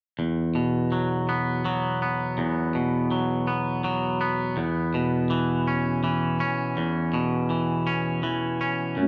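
Rock in a straight 6/8 with a hopeful, soaring mood, this short excerpt is carried by a bright, twangy electric guitar picking clean, compressed arpeggios up front, moving from Esus2 to C#m7/E at 4.6 seconds. Only at 9.0 seconds does a hollow, flute-like pad with ensemble chorus slip in, holding soft, warbling, detuned vintage chords. The band sounds as if playing live in one large studio room, framed by a moderate reverb.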